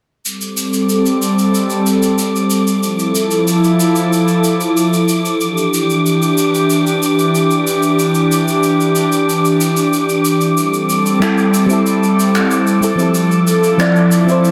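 Set to a relaxed, straight 93 BPM pulse in 4/4 carried by dark, rolled-off cabasa and finger snaps, this sunset chillout excerpt floats on a breathy, full-bodied pad with chorus and 12-bit sampler grit sustaining Am7, Fmaj7 and Em7 chords, while a wind-like tuned noise texture hovers quietly in a high register and a round, warbling FM electric piano with chorus and delay arrives at 11.2 s, all bathed in a lush hall reverb under a dense, heavily limited modern master.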